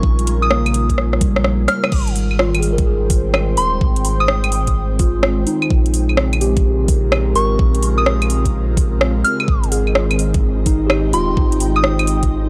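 Future garage at 127 BPM with a swung 4/4 feel and a rainy, melancholic mood, this excerpt sets a deep, round sub bass and up-front knocking electronic kick under a garage kit of metallic hats, claves, rim clicks and crash with a fill from 1.0 to 1.9 seconds, while a worn, slightly out-of-tune tine electric piano with sampler grit and a breathy, phased pad pump with sidechain compression through Bbm9 and Abmaj7 chords, a pure FM synth bell carries the high melody with chorus and delay, and a very quiet, flickering granular texture glimmers at the start and returns at 9.7 seconds, all in a dry, gritty hardware sound.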